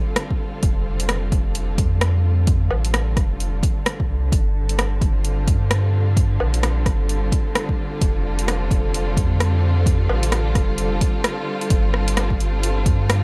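A swung 4/4 groove at 130 BPM, built on a punchy, overdriven electronic kick up front and a layered deep house kit of hi-hat, rim click and woodblock in a small room, drives this melancholic, wistful future garage excerpt, cut from a longer piece. A round, sine-like sub bass sits deep and forward with sidechain pumping, while a clear studio string section with vibrato holds bowed chords that also pump, moving through F and Gm7 under light reverb. A brief break at 11.2 seconds leads into a closing section on G7 at 11.7 seconds.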